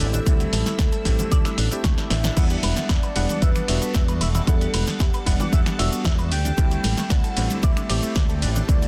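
A straight 4/4 nu-disco groove at 114 BPM rests on a punchy, up-front electronic kick from 0.3 seconds and a house kit of bright hats, finger snaps, shaker, ride, crash and a softly clipped snare that fills at 2.0 seconds, with ringing cabasa and congas sitting close and dry in the background. A bright fingered bass and a twangy, clean guitar riff, both through envelope filters, give the sleek, groovy feel its push beneath a clangy vintage electric grand piano pumping with sidechain and a lush sawtooth string machine holding slow-attack chords. On top, a round, dark octave-layered synth lead with vibrato, chorus, phaser and tape echo carries the melody over D9sus4 and Em7 harmony, set in light reverb within a dense, heavily limited master.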